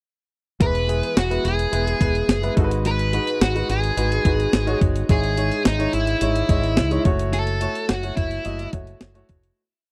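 A dry, close recording with a 1970s studio character and very little reverb frames this short, complete 1980s-style pop piece, which feels nostalgic and uplifting at a straight 107 BPM in 4/4. A sampler-style 12-bit drum machine carries the loudest part, with a thumpy kick, medium-tuned snare, hi-hat and a big, tape-warm backbeat. Underneath, a round, dark fretless electric bass sits up front, driving eighth notes with chromatic approach notes across the E, G#m7, C#madd9/G# and F#m7 changes. A polished baby grand piano adds syncopated drop-2 chords decorated with grace notes, while a distorted, picked fuzz lead guitar states a hook-based motif melody between 0.6 and 8.7 seconds. The single verse fades out from 7.3 seconds to its close at 9.6 seconds.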